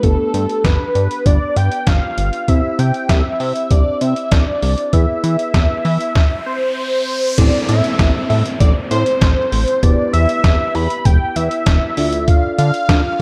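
Echo-heavy and lightly reverberant, this cool, driving synth-pop excerpt in A minor moves at 98 BPM in a straight 4/4, anchored by a gritty, pitched-down trip hop sampler-style drum kit with a thumpy kick and a glossy chorused synth bass, both up front. A thick, detuned unison lead with vibrato and analog delay carries the melody over muted, warbling felt-like synth keys, as the chords pass from G through C and E to Am, Em and Dm. An electronic riser and downlifter sound from 6.0 s to 12.3 s, the riser leading into the second section at 7.4 s.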